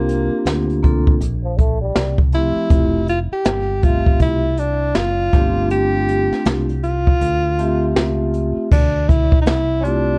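A swung 4/4 groove of brushed drums, whose boomy kick falls silent from 7.2 to 8.7 seconds, carries this cool, nocturnal jazz-hop excerpt, where a breathy tenor saxophone with vibrato and analog delay leads over ringing soft-mallet vibraphone and a round, dark fingered electric bass, a veiled cup-muted trombone slips in briefly at 1.4 seconds, and the dry mix wears the warbling pitch drift of worn cassette tape.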